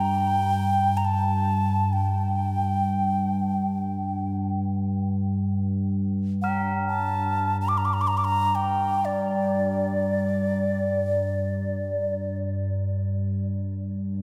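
This is world meditative music in free time, a haunting and meditative fragment cut from a longer piece. An alto ocarina carries the melody up front with an airy, clay-bodied tone, vibrato and a crisp attack, its line trailed by a diffuse ambient delay before it falls silent at 12.4 seconds. Beneath it, an analog drone holds a low G throughout, its nasal, detuned sawtooth and pulse-wave character slowly evolving through wave-folded, resonant colour and a chorus shimmer. Tubular bells sit softer in the background, struck with a padded hammer for a mellow, dark and solemn ring on a single Bb. The whole piece is bathed in a cathedral reverb with a 4.9-second decay, placing the instruments in a vast, echoing space.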